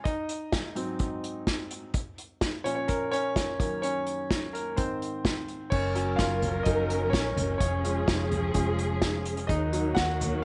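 A straight 4/4 pulse at 127 BPM drives this hopeful piano-driven pop excerpt, with an up-front acoustic drum kit played with bundle sticks: punchy kick, medium-tuned snare, toms and dark cymbals in a studio room. A clear, polished concert grand leads from the start, present and deep in the bass with short sustain, moving through Ab7, Bbm and Gb6. At 5.7 seconds a lush, bowed string section enters at a distance with expressive vibrato, joined by a round, foam-muted vintage electric bass, as the harmony passes through Gb, Db/F and Ebm under light reverb.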